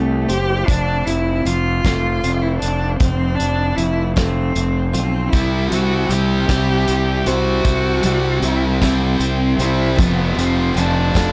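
A rich, bowed cello carries the melody up front, its smooth, even vibrato softened by a distant quality and trailed by tape echo. This bittersweet, anthemic quiet-loud alternative rock fragment moves in a slow 6/8 at 52 BPM, counted in dotted quarters, over a straight feel. A picked steel-string dreadnought acoustic guitar sits in the background with full-bodied arpeggios, while a fingered electric bass growls up front through fuzz and overdrive. A loose indie drum kit joins at 0.3 seconds, recorded in a small room with a fat snare, tight kick, hi-hat and a rolled-off top. At 5.3 seconds a biting overdriven guitar arrives with a warm, picked riff, as the harmony rocks between C and F under light reverb.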